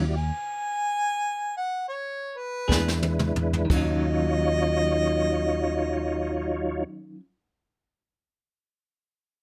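Smoky and mournful, this short slow blues in 12/8 is cut from a longer piece, and it opens in stop-time as the band eases back under a solo harmonica. The mellow harmonica carries a jazz-style second line with light vibrato and scooped notes, its tone roomy yet sitting up front. Beneath it, a clear tonewheel organ holds sustained chords through a slow rotary speaker with chorus vibrato, while an amped, fingered electric bass anchors the low end and a bright, twangy clean electric guitar with tremolo adds picked accompaniment in the background. At 2.7 seconds the harmony moves from Ebm to E7 and a brushed jazz drum kit enters with a fill across snare, toms, punchy kick and a dark crash, settling onto an Ebm9 at 3.7 seconds as the opening slowdown comes to rest. The sound is dry, with the rough feel of a home demo mix.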